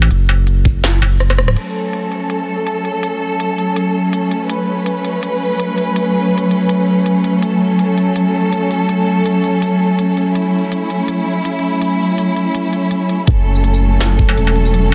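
A swung half-time groove in 4/4 drives this dark, spacious drum and bass excerpt, cut from a longer piece. An industrial electronic kit runs throughout, its overdriven clanging snare, crisp filtered hats, rim clicks, struck metal, tambourine and crash cymbal sitting up front, and a short drum fill and band accent lead into the main passage. A deep, thick sub bass with a saturated, fast-attack tone opens the track and returns later, joined by a knocking, layered electronic kick. From 1.6 seconds a muted, con sordino string section holds lush, veiled F-sharp minor chords with soft attack and vibrato, its sound filtered and pumping against the sidechain while a filter sweep works on the drums. At 13.3 seconds the track drops, bringing the sub bass and kick back in under the strings and kit, all within a dense, heavily limited master with light reverb.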